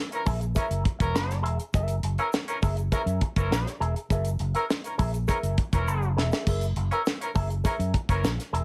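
A playful funk excerpt opens with a clear, tight horn section carrying a second line, a bright, twangy envelope-filtered guitar with wah and subtle chorus, a tight drum kit with a high-tuned snare and splash cymbal, and a grainy egg shaker tucked in the background, before a growly, punchy fingered bass joins up front at 0.3 seconds and a drum fill lands at 5.9 seconds over an F#9 groove in light reverb.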